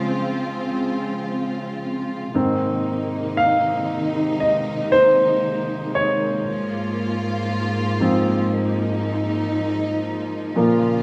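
A wet large-room reverb surrounds this hopeful, tender pop ballad, a passage cut from a longer piece in Db major, moving at a slow 58 BPM in straight 4/4 with the band playing live together. A clear, polished baby grand piano sits up front and carries the solo throughout, while a woody, bowed studio string section with vibrato holds close, sustained chords beneath it. The harmony rests on Dbmaj7 before shifting to Abadd9 at 2.4 seconds.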